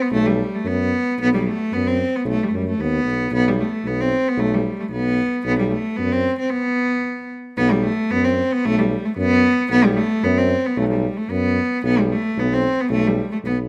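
Bittersweet and fiery, this straight 2/4 Balkan folk excerpt at 113 BPM sets a bowed solo cello up front, reedy and rich with a period-style gut-string tone, carrying the melody over a distant, roomy tuba bass whose soft attack and light vibrato lend a classical cast, the two moving between B5 and A7sus2/B harmonies in a moderate recital-hall reverb captured by close, detailed microphones, with a brief break from 6.5 to 7.6 seconds before the opening section returns.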